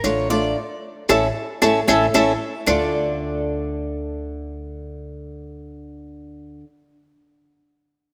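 A lush, wet hall reverb surrounds this rough home-demo mix, a danceable Cuban son and guajira fragment cut from a longer piece. The up-front tres opens with a solo of picked, metallic arpeggios on its double strings, some octave-doubled, beside an acoustic flamenco guitar fingerpicked with audible finger squeak, while a dark, thumpy pizzicato upright bass with gut strings sits underneath. Round, low-tuned bongos, close and very quiet, play from the start alongside woody claves and grainy, saturated maracas in the background, joining a band accent and a drum fill at 2.4 seconds before the percussion stops at 2.8 seconds, leaving the guitar, tres and bass to carry on.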